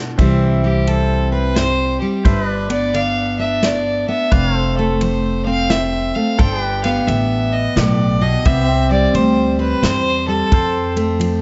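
A drum fill and a bright, freshly strung picked dreadnought guitar open this easygoing, down-home honky-tonk tune in C major at 87 BPM with a swung 3/4 lilt, as a woody, thumpy pizzicato upright bass, a punchy, airy studio drum kit and a clean, compressed pedal steel with volume swells on sustained chords settle in by 0.2 seconds, joined at 0.6 seconds by a clear, nasal, earthy fiddle that carries a solo up front until 10.9 seconds, over light reverb.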